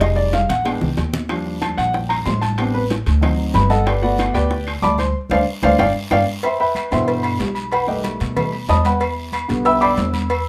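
A warm, intimate concert grand piano sits up front and takes the solo, its deep bass and audible action noise giving it a natural presence as the harmony moves through rich extended chords before settling in C major at 6.4 s. This lively, sophisticated Afro-Cuban jazz fragment runs at 187 BPM in a straight 4/4, carried by a thumpy, woody pizzicato upright bass with steel strings, also up front. Behind them sit bright congas, round low-tuned bongos and cowbell and distant claves, joined by ringing vintage timbales and agogo bells and a raspy guiro. A drum fill opens the passage, and another arrives with a band accent at 5.2 s, all in a moderate studio reverb.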